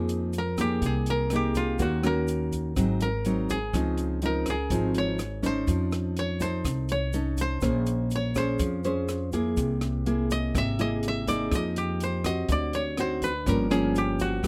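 A mellow koto plays the melody up front from the first moment, picked with fingerpicks, over dark, full-bodied classical nylon-string guitar fingerpicked in accompaniment and a woody pizzicato upright bass with steel strings, while a compact cocktail drum kit with a punchy kick, hi-hat and rim click, plus a grainy egg shaker in the background, enter at 0.1 seconds, all captured with close, detailed microphones in this intimate, melancholic bossa nova excerpt.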